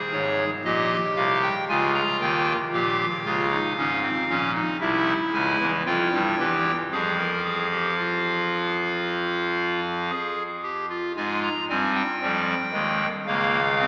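A straight 4/4 pulse at 57 BPM drives this solemn, baroque-style three-part fugue in F minor, a short fragment cut from a longer piece. A solo pipe organ plays throughout on a hollow clarinet reed stop with baroque voicing and audible chiff. It sits up front, spans Ab1 to Bb5, and moves through Bbm, C and Fm before reaching Bbmadd9 at 13.3 seconds. The long, wet reverb of a church or concert hall surrounds it, though the sound has a small-speaker quality.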